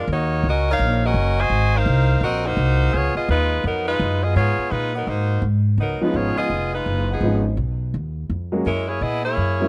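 Swung eighths drive this joyful big band swing fragment in 4/4, where a bright, loose saxophone section sings the melody up front with jazz vibrato over a woody, plucked upright bass that sits just as close. At 5.8 s the harmony settles onto ninth chords with a mixolydian colour, and at 6.0 s a warm grand piano enters with polished, short-sustained accompaniment. The dry, close sound and small room ambience give it the feel of a 1970s studio session.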